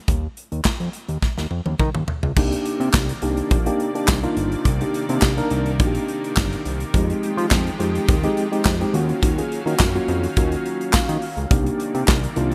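This excerpt from an early-eighties boogie funk piece moves at a straight 105 BPM in 4/4 and C minor, carried from the start by a punchy modern studio drum kit with kick, medium-tuned snare, hi-hat, handclaps, toms and crash, sitting up front with an airy, polished small-room sound. A fat analog bass plays alongside from the opening, thick and saturated with a wave-folded, detuned edge and a filter sweep, ranging from G1 to F3. After a drum fill from 1.2 to 2.4 seconds, the music shifts into its main section at 2.4 seconds, where a mellow, clean tine electric piano and a lush, chorused unison pad enter over chords moving from Cm9 through Fm9 and Ebm9 back to Cm9. The pad's slow-attack, full-bodied sustain fills the background, a very quiet, jingly tambourine joins just after, and the electric piano adds a short fill near 10.7 seconds. The mood is funky and slick, framed by light reverb and a bright 1980s-style digital production.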